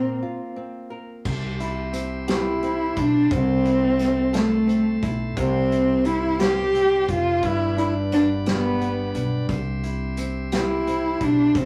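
A rough rehearsal-room recording with warm saturation, light reverb and studio ambience gives this cut from a longer six-eight pop ballad a lived-in feel. In C major at a slow, swaying 58 BPM, it carries a heartfelt mood. A dark, woody cello, a single bowed player with vibrato, sits up front carrying the melody. Beneath it, a small fingerpicked nylon-string guitar and a pizzicato upright bass with a dusky, steel-strung tone hold the accompaniment and low end. During a short break over a Bbsus2, a full, shouting tonewheel organ, bright and lightly overdriven through a stopped rotary speaker, enters with sustained chords at 1.2 seconds. At 1.3 seconds a distant, roomy acoustic drum kit joins, played with bundle sticks, with a punchy kick, a medium-tuned snare and dark cymbals, as the chords move through C, Am/C and G.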